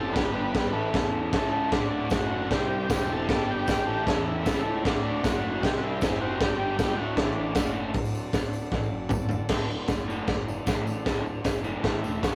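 A crunchy breakbeat drum kit stands up front in this swaggering, rowdy garage rock excerpt at 155 BPM in D mixolydian, its punchy kick, high-tuned snare and dark cymbals driving a double-tracked, overdriven guitar riff and a round, fuzzed bass that sits in the background. A buzzy vintage combo organ with light vibrato carries the melody until 7.7 seconds over a very quiet, reedy second organ holding sustained chords, while a bright, jingly tambourine enters at 2.1 seconds. A drum fill at 8.7 seconds leads into the final stretch, all captured as a rough rehearsal-room recording with tube saturation and light reverb.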